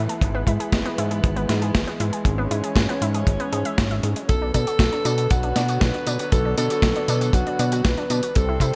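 A straight 4/4 pulse at 118 BPM drives this short, sunny and romantic italo disco excerpt, anchored by a dry, tight acoustic kick that sits up front. Around it, a gritty, compressed sampler-style kit adds hi-hat, a medium-tuned snare and tambourine, overdriven and set in a small room. A fat, detuned sawtooth bass with a quick filter pluck carries the low end, while a round, nasal analog pluck spins arpeggios through chorus and digital delay. Distant, floating chamber strings hold soft-attacked bowed chords underneath as the harmony moves from E/G# to Bm at 4.3 seconds. At that same moment an alto saxophone enters with a smooth-topped, pop-style solo melody, its vibrato trailed by delay, all wrapped in bright 1980s-style digital production with light reverb.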